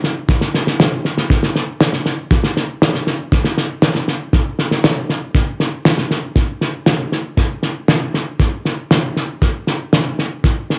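A muffled, lo-fi home cassette recording with a small booth's short ambience frames this anthemic, uplifting folk excerpt in a straight 4/4. The only part is a cloth-damped acoustic drum kit, sitting up front from 0.0 to 10.8 seconds, with a tight kick and a fat snare whose thuddy tone is saturated and gritty, its top end rolled off. The passage moves from one section into another at 6.4 seconds before it is cut off.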